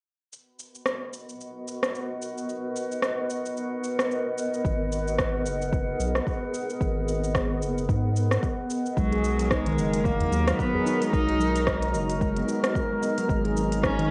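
An overdriven, tape-worn electronic kit of cabasa, smooth hi-hat and rim click opens this mystical, earthy organic downtempo piece in G# minor at 111 BPM with a swung 16th-note feel, soon joined by a blurred, granular cloud pad pumping on Bmaj7 and a glassy, chorused harmonics texture of drifting overtones, before a round, dark analog bass and a deep, overdriven kick arrive at 4.6 s on G#madd9, and from 9.0 s a distant bowed cello sings with vibrato and portamento through analog delay over ringing, meditative handpan arpeggios in tape echo, with a small, close udu touch at 10.2 s, the mix sitting in a wet room on a muffled home cassette recording.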